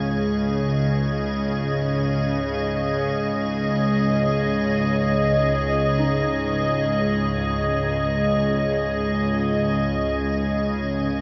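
Dark ambient drone in free time, this short passage cut from a longer piece feels cavernous and desolate. A dark chamber cello section sits up front, holding sustained chords with a reedy, gut-string tone, light vibrato and a smooth top in a period style. Beneath it, a string-like bowed drone hums low and tense, its sawtooth edge and ring-modulated grain swelled by a slow attack and long release. High above, an icy glass pad adds a crystalline, airy shimmer, detuned and chorused with its own reverb. At 6.0 s a very quiet grand piano enters with polished, short-sustained arpeggios, and the whole ensemble hangs in a long, wet cathedral reverb that stretches each sound into the dark.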